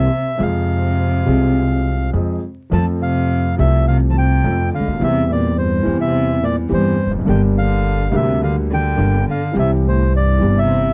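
A reedy, smooth bandoneon carries the melody in this passionate, sultry tango excerpt in F major, moving at 105 BPM with a rubato feel as the harmony shifts from F minor to F major at 2.7 s. A single bowed cello sings an expressive second line with vibrato and portamento. An intimate vintage grand piano, with audible action noise and deep bass, fills out the accompaniment over a dark, woody pizzicato upright bass, all in a dry, close 1970s-style studio sound with light reverb and vinyl crackle.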